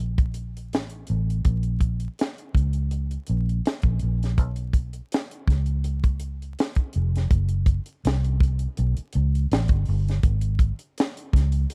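A lightly swung sixteenth-note groove in 4/4 carries this sensual, warm R&B and neo-soul fragment, where a dry acoustic funk kit with a high-tuned snare, a tight kick and hi-hat sits up front beside a round, foam-muted vintage electric bass played with the fingers, its amped tone dark and close, the whole mix shadowy with little reverb and dusted with vinyl crackle before the music moves into a new section at 7.3 seconds.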